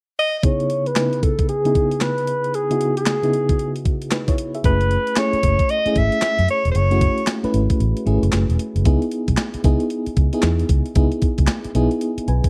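New jack swing R&B in C# minor at 114 BPM with a swung sixteenth feel, punchy and confident, where a bright alto saxophone with scooped notes, light vibrato and slapback echo carries the melody until 7.3 s over a tremolo-laced FM electric piano and a thumpy drum machine with a gated-reverb snare, handclaps and hi-hat, while a round, foam-muted fingered bass joins at 4.6 s as the chords move from C#m7 to F#m9, a filter sweep runs through the opening section, and the kick drops out briefly before the next section begins at 8.9 s, captured as a dry, close 1970s-style studio take.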